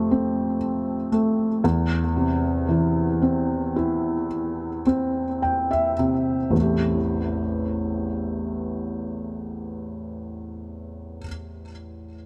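A felt-muted upright piano carries this brief, emotional pop excerpt entirely on its own, its soft, boxy tone sitting up front with the audible action noise of the keys adding an intimate, close-up quality. In A minor at a slow 52-59 BPM in a straight 4/4, the piece has a longing mood, and the tempo slows down across the opening 6.5 seconds. The harmony moves from F to C/E before settling on Am7 at 6.5 seconds, where the second section begins. A felt piano fill from 4.8 to 6.5 seconds leads into that change, and the playing spans from A1 up to G5. A digital delay on the piano and a light reverb lend a gentle sense of space to the mellow sound, which ends at 12.3 seconds as a fragment cut from a longer piece.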